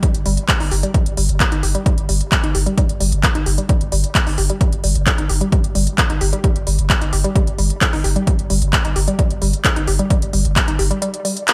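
Intense and hypnotic, this driving peak-time techno excerpt runs at 131 BPM in a straight 4/4, tuned slightly flat to A4 = 439 Hz. A punchy, layered electronic kick anchors the groove from the start, while a techno kit adds handclaps and smooth hi-hats that sit up front, with sidechain pumping on the hats and cymbals and a touch of gated reverb. Underneath, a deep, thick sub bass holds G1, its sine tone saturated with overdrive, softened by a low-pass filter and shaped by sidechain pumping. The riff comes from a woody, wave-folded pluck moving between G3 and G4, an evolving, percussive sound with a fast attack and short decay, colored by chorus, delay and sidechain pumping, and sitting lower in the mix than the drums. The production has a bright 1980s-style digital sheen with light reverb, and the kick drops out at 11.0 seconds, just before the cut at 11.5 seconds.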